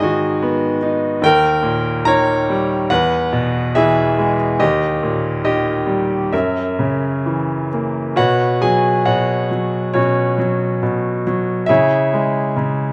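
A bright grand piano opens on a G#m chord and carries this peaceful, calm passage of lyrical classical solo piano alone, cut from a longer piece and drifting through rubato at about 69 BPM in 4/4, with tuning set to A4 = 435 Hz. The instrument sits up front with a brilliant, intimate tone, long sustain and audible action noise, captured by close, detailed microphones in light reverb. Around 8.2 s the harmony turns from the opening D#7, Eadd9 and F#7 colours toward Bsus2, settling on C#m at 11.7 s.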